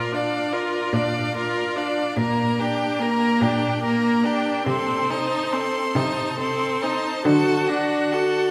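The viola sits up front in this slow, romantic string quartet movement in G minor, its focused, vibrato-rich accompaniment coming through most strongly despite a slightly distant placement. Above it, the first violin carries the melody between D5 and C6 with a smooth, even, close tone. The second violin adds a bright, intense second line with an airy bow. The cello anchors the bass with a clear, bowed sound. All four solo players sustain the melancholic, solemn mood together throughout the roughly 8.5-second fragment, cut from a longer piece. The music moves in a rubato 6/8 at roughly 44-50 dotted-quarter beats per minute, through harmonies from Bb to Gm/Bb, Adim/C and finally D at 7.3 seconds. The quartet is heard in a church or concert hall with a wet reverb lasting about 2.3 seconds.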